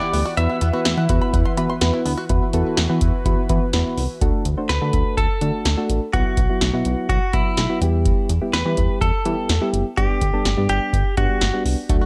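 A dry analog drum machine in straight 4/4, with a deep kick, punchy snare and metallic hats up front, drives this nocturnal synth-pop excerpt over a glossy, retro chorused synth bass. Soft, round electric-piano-like keys with chorus run throughout, while a smooth, detuned analog pad sits in the background until 4.2 seconds, and a twangy fingerpicked banjo adds bright arpeggios with tape echo at the opening and again briefly at the close. A clean, direct-recorded electric guitar carries the melody with tape echo, dropping out after 1.8 seconds and returning at 4.7 seconds, all within a light digital ambience.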